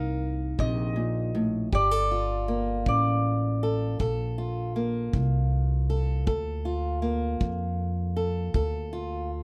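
A slow, straight 12/8 sway at 53 BPM carries this mournful, smoky acoustic country blues fragment in G minor, moving from Cm7 to Gm9, where a mellow, round double-strung mandolin picks a melody until 4.0 s over a boxy fingerpicked archtop guitar with audible finger squeak, a woody pizzicato upright bass on steel strings, and a dark, tight kick drum with brushes entering at 0.6 s, all set in light reverb.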